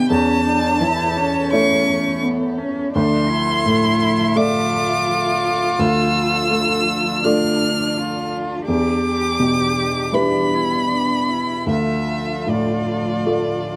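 Fragile and reflective, this fragment of a longer neoclassical piano-and-strings piece moves at a rubato 83 BPM in D dorian, drifting from A/E through Dmadd9 and Em7 to Dm. Up front, a felt-muted upright piano gives soft, mellow, intimate accompaniment while a single bowed violin carries a smooth, even melody with vibrato. A bowed cello adds an expressive second line with portamento and soft attacks, and a focused chamber string section holds sustained chords in the background, all set in a moderate booth ambience.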